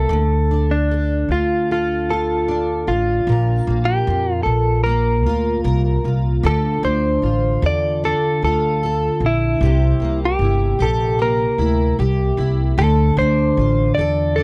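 From the opening moment, a clean, direct-recorded electric guitar carries a picked, compressed melody over a double-tracked, fingerpicked steel-string acoustic guitar and a woody, growly pizzicato upright bass, all close and up front in this wistful, reflective acoustic pop excerpt in D minor at 76 BPM. The straight 4/4 progression moves from Dm to Bb at 3.3 s, where a longer second section begins, then returns to Dm before passing through C7 and settling back on Dm at 12.8 s. The dry, close 1970s-style studio sound leaves the dark bass and the warm guitars sounding intimate and reflective.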